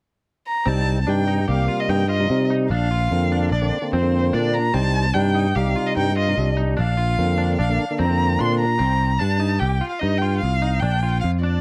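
Brooding and intricate, this short cut from a longer progressive instrumental moves at 148 BPM in a straight 5/4, centred on C dorian and swinging between Cm and Bbadd9. An expressive bowed violin carries the melody up front from 0.5 s with rich vibrato and portamento, while a lightly overdriven tonewheel organ with key click and a stopped rotary speaker supplies accompaniment until 8.7 s. Clean, compressed arpeggios from a semi-hollow electric guitar, coloured by analog chorus and slapback echo, sit above a growly, bright picked electric bass, all captured in a dry, close 1970s-style studio sound.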